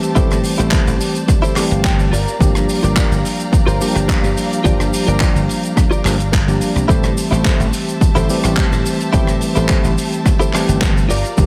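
A roomy studio sound frames this sensual, cosmic nu-disco excerpt, led by a punchy, overdriven electronic kick set up front and a dry, foam-muted thumbed slap bass. A damped 70s drum kit with a rolled-off top adds handclaps, hi-hat, rim click and shaker, while a tine electric piano with dub echo comps over Am7 and Gm7 chords beneath a rich, bowed string section whose smooth, vibrato-laden chords pump with sidechain. A bright, compressed, clean electric guitar picks a riff through analog chorus and dub echo, slipping in a short fill at 1.3 seconds.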